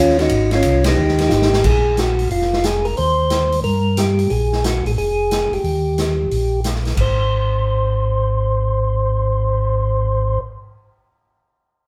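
Heard through a reverberant studio from further back in the room, this soulful, bluesy soul jazz organ trio excerpt swings along, with a clean, percussive tonewheel organ carrying the melody and a dark, round second organ playing the bass line with chorus vibrato, both up front through slow rotary speakers, while an acoustic big-band drum kit with punchy kick, snare, hi-hat, ride, crash and a cymbal swell joins a band accent at 0.8 seconds and plays a short fill at 1.3 seconds before stopping at 9.6 seconds, leaving the two organs to sound alone.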